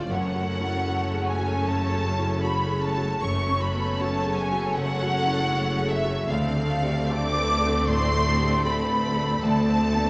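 A sorrowful, longing passage from a cinematic film score opens with the full string body, a dark concert grand piano and a concert harp sounding together, set at a slow 77 BPM in 4/4 with a rubato feel. A rich, focused violin section carries the melody high above, its vibrato lush, while a second, smoother violin section and a mellow, hollow flute ensemble entering at 0.1 s shape a soft second line in the background. Beneath them the piano gives a deep, shadowed accompaniment, joined by a distant viola section, as the harp's bright, ringing arpeggios shimmer through the texture. Cellos and double basses hold an even, bowed foundation low in the mix. The harmony moves from F#m to a yearning Dm7 at 6.3 s, and a generous scoring-stage reverb wraps the ensemble in a spacious, wet sound across this 10.1-second cut from a longer piece.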